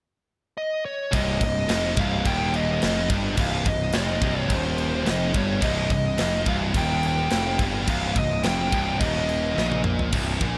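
A dark, smooth overdriven lead guitar opens this epic, dark heavy metal excerpt alone at 0.6 s, then at 1.1 s a pair of bright, picked high-gain rhythm guitars (one scooped and touched with slapback echo) settle into the background beneath a growly, up-front fuzz bass and a polished, airy acoustic drum kit with a tight kick, all set in a lush hall reverb that gives a big arena sound, before a drum fill at 9.6 s.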